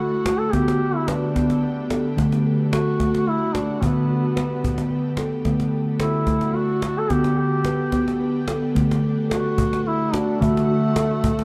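Soaked in a dark, echo-chamber reverb, this dreamy, gentle world-meditative excerpt in D major moves at 109 BPM in a lightly swung 3/4, with a round, ringing steel tongue drum struck with rubber mallets spinning arpeggios up front, a mellow, folk-style duduk singing a scooped, vibrato-laden melody that sounds distant through its shimmer reverb and tape echo, an ethereal, detuned sawtooth pad slowly swelling in with chorus and phaser beneath the alternating D and G/D chords, and a woody cajon with faint snares joining at 0.3 seconds.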